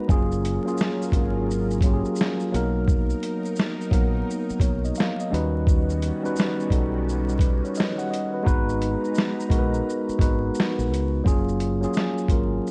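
A mellow, tape-tinged tine electric piano opens this nostalgic lo-fi hip hop excerpt over a lush, thick, detuned sawtooth pad with chorus and phaser sitting in the background, moving through a cycle of seventh chords with a swung sixteenth feel. A round, dark fingered dub bass and an up-front, gritty sampler-style drum kit, pitched down and compressed, with a thumpy kick, medium-tuned snare, hi-hat and shaker, join at 0.1 seconds. The pad stops at 11.2 seconds as the opening chord returns, and the piano, bass and drums continue to the end in a dry, dull-topped sound dusted with vinyl crackle.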